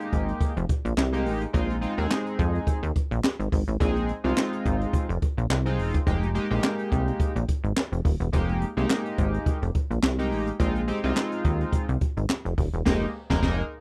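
Funky and danceable, this early-eighties boogie funk clip moves at 106 BPM in 4/4 with a 56% swing on the sixteenths, settled in F minor and cut from a longer piece. A jazz brush drum kit plays throughout, its acoustic studio-room sound roomy and distant yet up front, with dark cymbals, a high-tuned snare, a boomy kick, hi-hat, crash and handclaps, all softened by a rolled-off top. A plucky analog bass enters at 0.1 seconds, punchy and up front, its sawtooth and pulse-wave tone shaped by a fast-attack filter pluck that decays and evolves as it moves between Eb1 and F2. A chorused polysynth supplies glossy, retro chords from Ab3 to Bb4, blending pulse-width modulation, sawtooth, triangle and a sub octave with a filter sweep and a bright, sustained edge. The harmony alternates between a rootless Fm11 and Bb9sus4, and a band accent lands at 12.9 seconds on the returning Fm11, all captured dry with little reverb.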